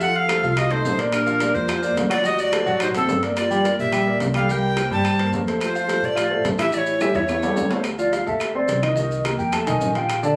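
Ringing metal-shell timbales, round low-tuned bongos, woody claves and grainy maracas drive a fiery straight 4/4 Afro-Cuban jazz groove, cut from a longer piece, over dark pizzicato upright bass and an up-front grand piano comping through changes like F7, Gm7 and Dm9. A breathy, bright tenor recorder with tongued chiff and plate reverb carries the melody until 7.7 seconds, while a hollow, mellow jazz flute with vibrato plays a second line beneath it. After a drum fill, the flute takes a crisp-attacked solo from 7.9 seconds. The whole band is heard through a phone in a club room, its sound compressed and moderately reverberant.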